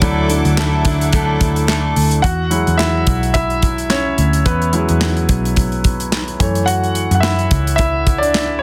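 A clear, intimate grand piano with audible action noise leads this uplifting piano-driven pop excerpt from the start, joined by lush bowed strings in the background until 2.2 seconds, a fingerpicked steel-string acoustic guitar riff with finger squeak that drops out at 2.7 seconds, a dark, foam-muted vintage electric bass, and a tight, up-front acoustic drum kit with handclaps, hi-hat, kick and snare, moving from Dadd9 through Eadd9 to F#m7 with a light swing, small room ambience and a dense, heavily limited master.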